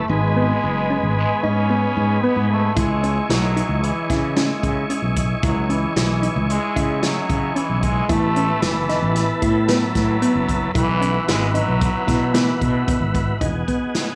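A growly, up-front fretless electric bass drives this bright progressive instrumental in 5/4 at 113 BPM, where a buzzy, raspy metal-muted trombone with tape echo sings a breathy second line over a clean tonewheel organ with chorus vibrato and key click, a round, tine-like synth pluck spinning arpeggios through chorus and phaser, and a boomy, roomy big-band drum kit that joins at 2.8 seconds, all moving from G#m through C#madd9, Asus2 and Bsus4 to Emaj7 in this excerpt from a longer piece.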